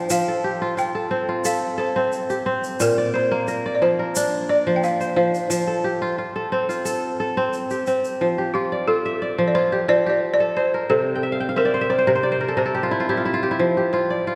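Crisp, ringing fingerpicked kora arpeggios sit up front in this flowing, joyful West African string and xylophone piece at 89 BPM in F major, with a woody, buzzing balafon carrying the melody under rubber mallets, a grainy tube shaker that stops at 8.1 seconds, a kora fill from 11.1 seconds, and the whole cut from a longer piece bathed in a long church reverb.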